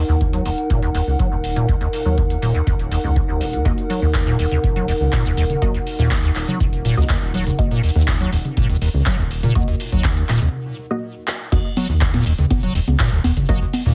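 A squelchy, resonant square-wave acid bass and a warbling, lo-fi pad open this hypnotic, raw acid house excerpt in Eb minor at 122 BPM, with a round, dark analog bass joining almost at once beneath them. A deep electronic kick and a booming analog drum machine with metallic hats, congas, handclaps, shaker, toms and crash cymbal set a straight 4/4 groove that sounds re-recorded in a large room. The saturated acid bass sits up front, carrying its riff through a long filter sweep, with tube saturation, ensemble chorus and tape echo on its hollow tone, while the pad and the round bass both pump against the kick. From 3.7 seconds a muted, detuned dub chord stab adds short, phased plucks with subtle chorus and tape echo. The pad ends at 10.5 seconds as a brief break begins, and a drum fill leads into the drop at 11.5 seconds. The whole mix has a heavily compressed, radio-like sound with light reverb, and it is cut from a longer piece.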